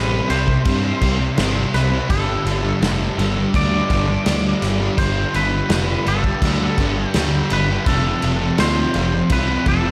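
A straight 83 BPM pulse in 4/4 from a loose indie drum kit, entering at 0.3 s with a tight kick, medium-tuned snare, crash cymbal and a rolled-off top, drives this blissful, hazy shoegaze and dream pop fragment in G mixolydian, where an up-front, double-tracked fuzz guitar riff with analog chorus and an overdriven fuzz picked bass sit beneath a clean, compressed, twangy guitar melody bathed in lush chorus and diffuse ambient delay, the chords moving from C5 to Gsus2 and on to F inside a dreamy mix soaked in moderate hall reverb.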